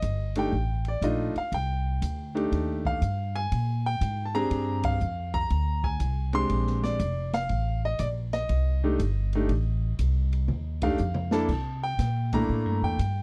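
Concert grand piano, woody pizzicato upright bass and a smooth, rolled-off jazz drum kit start together in this playful, swinging trio excerpt, moving through F13, Bb13, F9 and C13 chords. The clear, vintage-sounding piano carries the melody up front over a thumpy bass, while the drums add a boomy kick, medium-tuned snare and dark cymbals. The band hits accents at 4.8 and 10.7 seconds, the second landing inside a drum fill from 10.5 to 11.5 seconds, all captured in a dry, close 1970s-style studio sound.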